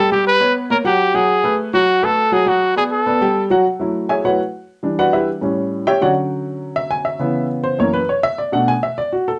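A driving, sultry jazz fragment opens with a breathy, vibrato-laden trumpet melody, up front and touched with plate reverb, over an intimate baby grand piano whose short sustain and audible action noise sit close in a moderate club ambience; the trumpet stops at 3.5 seconds and the piano carries on alone in a solo from 3.7 seconds through chords such as F#m9, Em9, A7 and Dmaj7.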